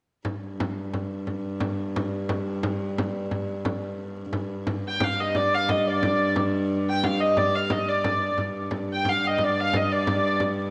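Heard through lush hall reverb on a home cassette recording, this ancient, driving medieval dance, cut from a longer piece, moves at 118 BPM in 6/8 as a close, dry frame drum and an airy, ringing viola da gamba holding a G2 drone open the music before a smooth, even hurdy-gurdy, colored by cassette tape, takes up the melody at 4.9 s.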